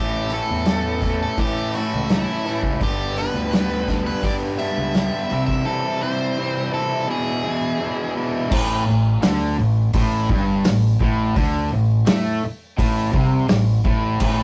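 A straight 4/4 classic rock groove at 84 BPM carries this confident, sunny cut, where a dark, nasal lead guitar with a parked wah sings its overdriven melody up front until 8.1 seconds over a crunchy picked rhythm guitar, a bright cranked stack guitar with spring reverb in the background, a growling fingered bass, and a punchy vintage drum kit with dark cymbals entering at 0.3 seconds, while a very quiet double-tracked fuzz guitar joins at 8.5 seconds as the chords move from A through G, C and E7 to A5, all captured in a rough rehearsal-room sound with saturated, rolled-off highs.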